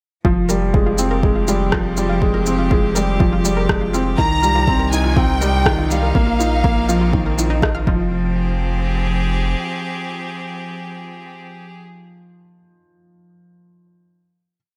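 A four-on-the-floor electronic kick and a restrained shaker and rim click drive this intimate, hypnotic piano and strings electronica track at 122 BPM in F minor, with a round analog bass holding sustained roots under a clear, distant string quartet that pumps with the sidechain and carries light vibrato. Up front, a soft felt-muted upright piano plays a 16-step arpeggiated riff, while a bright sawtooth pluck sits in the background, looping a chorused, tape-echoed 5-step sequence that drifts against the bar. A rich, close violin section enters at 4.2 seconds with expressive arching phrases over chords moving from Fmadd9 through Cm and Bbsus4; after the drums stop near 8 seconds, the piano and quartet linger on a final Fmadd9 chord, with the piano ending at 14.6 seconds.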